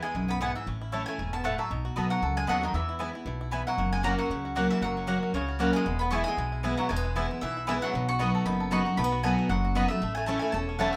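A full-bodied dreadnought acoustic guitar sits up front in this driving, virtuosic bluegrass cut, picking out the accompaniment at a brisk 231 BPM in 4/4 with a light swing on the eighth notes. Above it, a picked mandolin carries the melody high in its register, its doubled strings sounding woody, while a bright, twangy fingerpicked banjo shares the melody from the background. A lap resonator guitar, played with fingerpicks and slide, weaves a metallic, nasal second line. A second mandolin, rounder in tone, adds stabs from 0.4 seconds, and a thumpy pizzicato upright bass with steel strings anchors the low end. Set in E major, the passage moves through E, A, B and F# chords, and the ensemble sounds as if it plays in a small, reverberant room.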